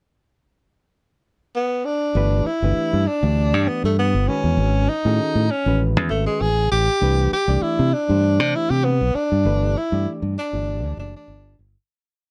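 A breathy tenor saxophone opens this slick, funky piece of electric jazz fusion at 1.6 seconds, sounding a short pickup phrase in G major at 99 BPM with a light sixteenth-note swing. At 2.1 seconds an overdriven reed electric piano and a bright fingered electric bass join. The bass sits up front with a direct, syncopated riff, while the piano, played through a combo amp, adds reedy, barky, gritty quartal voicings in a pushed chord rhythm. The saxophone carries a motif-based jazz melody in song-like phrases, using subtone, vibrato and scooped notes, with a slapback echo. The harmony moves through Gadd9, Amaj9 and Cmaj9 before returning to Gadd9 as the track fades out from 9.5 seconds. The sound is a dry, close 1970s-style studio recording with light reverb.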